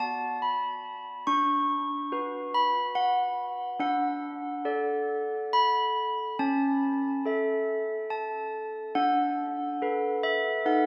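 Clear, ringing handbells with hard clappers carry this serene yet festive classical tune alone for the full 10.9 seconds, spanning C#4 to C#6 in 3/4 at 71 BPM, tuned to A4 = 436 Hz. The harmony moves from B minor through D and A/C# to a closing Bm7/D. A wet church reverb with a 3.7-second tail places the listener further back in the room, in this brief excerpt cut from a longer piece.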